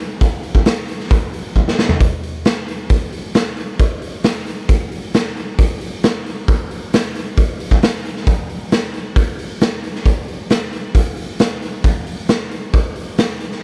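Rock drum excerpt at 134 BPM in a straight 4/4, heavy and gritty, with a raw, saturated acoustic kit of hi-hat, punchy kick, medium-tuned snare and toms sitting up front in a bright stone room that pumps, its tone warm with a rolled-off top, and a drum fill at 1.6 seconds.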